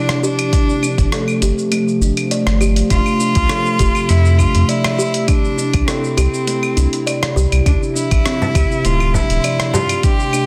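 Earthy and hypnotic, this organic downtempo fragment in D minor moves at 101 BPM in a straight 4/4, drifting through Dm9, G9sus4, Fmaj7 and C. An intimate, sul tasto cello carries the melody with light vibrato and digital delay, while a woody kalimba plays arpeggios through its own delay, and a warbling, nostalgic tape-like pad holds dark chords with chorus and sidechain pumping. Underneath, a gritty sampler-style kit of cabasa, claves, hi-hat and rim click sits with an overdriven electronic kick and a round, up-front sub bass that enters at 1.0 s, a frame drum played with hard hands arrives at 8.4 s, and the master is dense and heavily limited.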